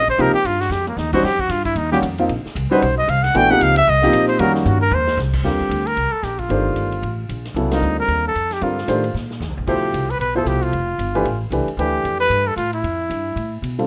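A mellow trumpet and a woody, plucked upright bass open this swinging modal jazz passage, with the trumpet playing solo over the first 5.4 seconds. Its tone is smooth on top, with light vibrato and scooped notes, and it sits up front with plate reverb. A baby grand piano accompanies with a warm, intimate sound, short sustain and audible action noise, also dressed in plate reverb. Further back, a big-room drum kit with a punchy kick and medium-tuned snare, plus crash, hi-hat, ride and toms, adds drum fills. The harmony moves from F9sus4 to Cm11 and Dm11, with a band accent at 7.7 seconds, giving the cut a spiritual, hypnotic mood. The rough home demo mix carries moderate studio ambience, and the recording is cut from a longer piece.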